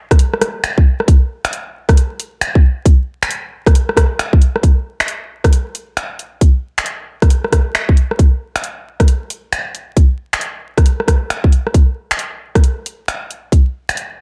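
A tight, layered electronic kick drum sits up front through this wistful, nocturnal future garage excerpt at 135 BPM, the swung 16th-note feel giving the 4/4 groove a loping shuffle. Alongside it, a garage drum kit of finger snaps, rim clicks and bright hi-hats runs from 0.1 to 14.1 seconds, both parts carrying a small-room ambience. The dark production is dressed in light reverb and vinyl crackle, and the music moves into a new section at 4.6 seconds.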